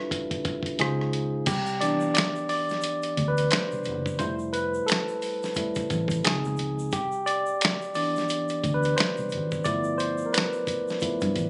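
R&B with a neo-soul lean, this relaxed, warm cut sits at 88 BPM in 4/4 with a swung sixteenth-note feel in C major, and it is taken from a longer piece. A barky tine electric piano, lightly overdriven through a combo amp and placed up front, carries the harmony from the start and takes a solo from 1.5 seconds to the end, moving through chords such as G13, Dbmaj9, Cmaj9 and Fmaj7. Underneath, a vintage muted fingered electric bass gives a dark, round, punchy low end with a foam-muted, amped tone. A dusty sampler-style drum kit, compressed and gritty with a thumpy kick, medium-tuned snare, rim click, hi-hat, finger snaps and crash, sits up front throughout. From 1.5 seconds a tube shaker and group handclaps join, close and dry in the background. The sound has the intimate, slightly lo-fi character of a phone recording in the room, with studio reverb and compression and a muted top end.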